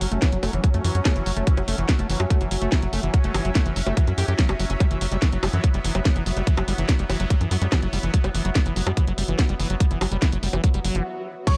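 This intense, driving psychedelic trance excerpt opens on a tight, nasal sequencer bass with tube saturation, a squelchy, resonant liquid acid bass riff colored by chorus, cassette tape and tape echo, a bubbling stepped-filter texture of bright sustained chords, and a cloudy granular pad drifting in the background, with a garage drum kit of cracking snare, hats, bongos and crash cymbal. An up-front electronic kick arrives at 0.2 seconds, and the texture, acid bass and pad pump together under sidechain compression in a dark, digital ambience. At 10.8 seconds a swell and sub drop rises behind the groove, and at 11.5 seconds a thick, detuned unison lead with phaser and vibrato cuts in just as the piece breaks off.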